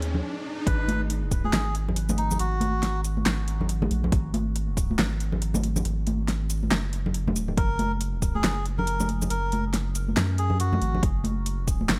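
A round, deep dub sub bass sits up front through this dark, heavy deep dubstep excerpt in G# minor at 139 BPM, moving in a swung half-time feel with a tape-warm deep house kit of fat snare, metallic hats, handclaps and shaker, ringing high-tuned congas, an overdriven electronic kick dropping in at 0.7 seconds after a brief electronic riser, and a reedy, breathy melodica carrying dub echo, all in a dry mix.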